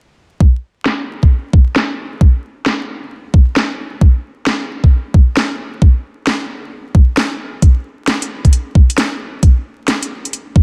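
A knocking, up-front electronic kick opens at 0.4 s and is joined at 0.9 s by a layered garage kit of cracking snare and metallic hi-hats, both low-pass filtered and swung on the sixteenths, giving this moody, late-night two-step UK garage drum groove a tape-warm character under light reverb, vinyl crackle and a dense, heavily limited master.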